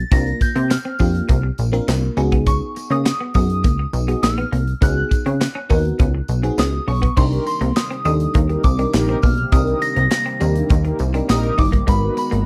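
Early-eighties boogie funk at 102 BPM, danceable and funky, built on a punchy, plucky analog bass and an up-front studio drum kit with a tight kick, handclaps, hi-hat and crash, while a jingly tambourine sits distant in the background. A soft, pure synth bell carries the melody over a lush, dreamy FM electric piano with a pad layer, both treated with chorus and phaser, as a clean semi-hollow guitar plays a riff through analog chorus. At 7.2 seconds the harmony moves from suspended ninth chords to minor ninths, bringing in a shimmering, very quiet pulse-width pad and a dark, round synth brass second line, all in a dry, close 1970s-style studio sound.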